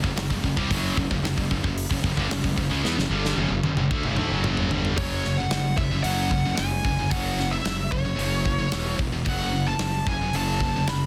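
Dry and densely limited, this excerpt of epic heavy metal opens with a double-tracked, high-gain distorted guitar riff in the background, alongside two bright, scooped high-gain guitars, one very quiet. Beneath them sit a growly, punchy fuzz bass and a big-room acoustic drum kit up front with a tight kick and a clipped, medium-tuned snare. After a drum fill from 2.8 seconds, the double-tracked guitar drops out at 5.0 seconds and a distorted lead guitar with a dark tone carries the melody up front to the end.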